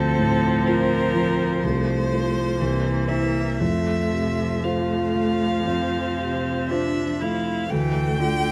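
Close, detailed microphones capture this slow romantic piano quartet movement inside a moderate scoring-stage reverb with a 1.8-second decay. It is serene and lyrical, in F major at 57-65 BPM in 4/4 with a rubato feel and tuned to A4 = 438 Hz. From 0.0 to 8.5 seconds, a focused solo violin sings the melody with vibrato over a smooth, even cello second line and a rich, more distant viola accompaniment, while the dark, mellow concert grand sits up front with deep bass, long sustain and audible action noise, moving through Dm7, F/C, C7 and F before settling on Dm.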